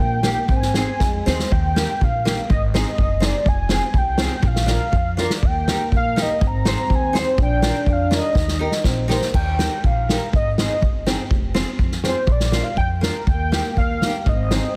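A velvety, chorus-treated synth lead carries the melody from the first second over a thumpy gut-string upright bass and a distant, mellow euphonium second line that drops out at 1.5 s and returns at 5.4 s, then a woody, boxy picked acoustic guitar with old strings and a punchy, up-front acoustic drum kit with dark cymbals and drum fills join this festive, jolly alpine folk dance-band passage in Eb major at 122 BPM in a rubato 2/4, all set in light studio reverb with a heavily compressed radio sound.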